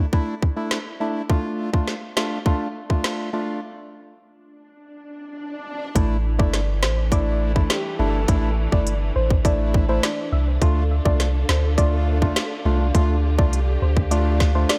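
Sultry and tough, this dancehall excerpt in D minor moves at 103 BPM with a hollow, percussive organ stab and a tape-warm island pop drum kit of tight kick, woody snare and smooth hats, breaking at 3.6 seconds for an electronic swell before a punchy sub bass and lush pumping strings arrive at 6.0 seconds, followed by a soft round pluck with delay at 6.4 seconds and a brief breathy flute-like synth lead at 7.7 seconds, all over a light reverb.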